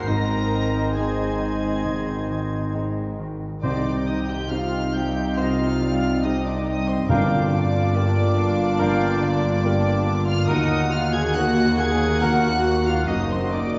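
Longing and moving, this slow, rubato cinematic excerpt sets a floating, sul tasto violin section melody high over a second violin line, a bright clarinet, a mellow cor anglais with vibrato and a distant, airy flute ensemble, all moving through chords of Ab, Cm, Gm7 and Ebm. Beneath them a felt-muted upright piano with audible action noise, soft-edged violas, a tight French horn section, a very quiet ringing harp arpeggio, and bowed cello and double bass sections fill out the accompaniment and bass. Timpani struck with hard mallets enter at 3.6 s and stop at 8.3 s, and the whole ensemble sits back in a wet scoring-stage reverb with a dark, rolled-off top.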